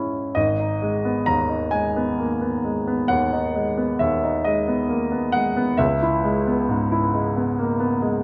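Heard through a moderate recital-hall reverb, a clear, present grand piano sits up front in this mournful, yearning romantic nocturne in G# minor, unfolding with rubato at 44 BPM in 12/8 across a span from G#1 to A#5 as the harmony moves from G#m at 0.4 seconds to C#m7 at 5.8 seconds before this fragment of a longer piece breaks off at 8.2 seconds.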